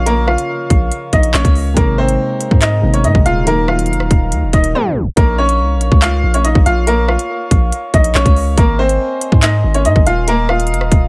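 A dry mix opens this dark, ominous drill excerpt in Bb minor at 141 BPM with a half-time feel, where a brilliant, woody upright piano carries the delayed melody over a soft, felt-muted upright piano that accompanies until 5.2 s, pure, ethereal glass harmonica chords sit in the background, a deep 808-style sine bass with a fast attack decays up front, and an electronic drill kit of hard-clipped kick, crisp hi-hats, handclaps and rim clicks drives the track until a tape stop brings a break at 4.7 s before the second section.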